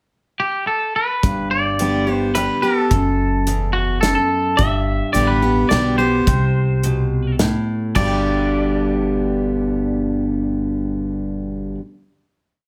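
A twangy, tape-echoed electric guitar opens this heartfelt, down-home honky-tonk waltz at 0.4 seconds, and at 1.2 seconds a full-bodied picked steel-string acoustic guitar with alternating bass and strum, a woody, thumpy upright bass playing root and fifth with walk-ups, and a punchy small-room country drum kit join as the clean electric guitar takes a solo of answering blues licks, the drums stopping at 8.1 seconds while the other parts ring out on a final chord in moderate studio reverb.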